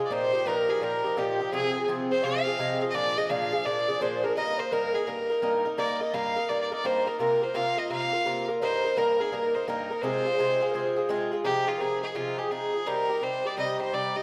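Set in a recital hall with a generous, ringing reverb, this short cut from a longer Celtic folk hornpipe moves at a driving 169 BPM in 4/4, with a 64% swing on the eighth notes and a spirited lilt in F dorian. An Irish bouzouki sits up front, its picked double strings giving a metallic, acoustic shimmer as it carries the accompaniment through chords such as Ebadd9, Fm, Bb7 and Eb. A single fiddle leads the melody, also up front, with a clear, intense, somewhat boxy tone, light vibrato and an airy bow. Behind it, a hollow wooden flute plays a second line, close-miked yet set in the background, its tongued notes breathy and touched with vibrato. The flute drops out at 11.1 seconds, just before the second section begins at 11.4 seconds, leaving the fiddle and bouzouki to push on over Fm7 and Cm until the cut ends at 14.2 seconds.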